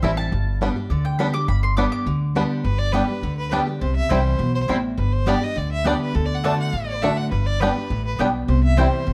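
A bright, woody mandolin solo opens this joyful bluegrass excerpt, its double strings ringing over picked steel-string acoustic guitar, fingerpicked banjo arpeggios and a thumpy pizzicato upright bass. The full-bodied jumbo guitar sits up front in the accompaniment, while the twangy, percussive banjo adds a steady weave of arpeggios. At 2.6 seconds a clear, smooth fiddle takes the melody, bowed by one player with light vibrato and an even tone. The brisk, virtuosic band moves through G, C, G, D, G and C, with the bass placed up front and the mandolin adding stabs. Light reverb and a dark, warm production give the acoustic group a close, rounded sound.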